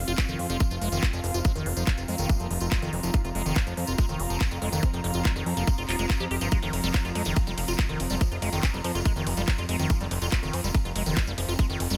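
A lightly reverberant, tape-tinged mix puts a tight electronic kick and a fat, saturated analog bass up front in this driving, psychedelic trance excerpt. The thick, detuned bass holds a nasal sawtooth-and-square tone that evolves, while a squelchy, resonant liquid acid bass carries the riff through phaser, filter sweep and dub echo, pumping against the kick. The drum and bass drum kit adds crisp hats, handclaps and ride cymbal in a layered, produced groove, and a bright, jingly acoustic tambourine sits close and dry beside it. Overhead, an airy, breathy pad with a vintage warble and noise layer fills the upper register with chorus and sidechain pumping, while a very quiet, morphing wavetable pad sustains chords beneath it. From 1.2 seconds a very quiet formant-sweep wobble bass enters as a second line, its detuned, compressed tone wobbling softly until 11.7 seconds.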